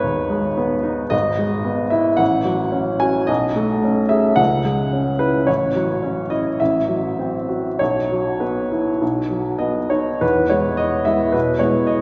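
Lyrical and hopeful, this brief excerpt from a romantic classical character piece features a woody, smooth upright piano with a vintage tone and long sustain, played up front with free rubato across a range from G#1 to G#5, ringing in the wet church reverb of a hall as its harmonies move from G#m through a searching B13 and a Bsus4 before settling on E major at 10.2 seconds.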